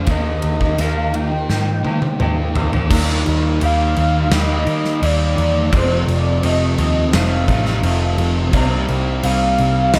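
Light reverb and small-room ambience frame this melancholic, brooding shoegaze and dream pop excerpt at 85 BPM in 4/4, where a velvety, detuned synth lead carries the melody with chorus and slapback echo over a crunchy, double-tracked overdriven guitar, a dark fuzz guitar, a clean, twangy guitar touched by reverse reverb, and a round, foam-muted picked bass up front, while a resonant, phaser-tinged pad sustains chords until 2.9 s and a gated 80s drum kit with punchy kick and bright cymbals enters at 0.1 s, playing a fill from 1.5 s into the move from Ebadd9 through Ebmaj7, F7 and Cm7.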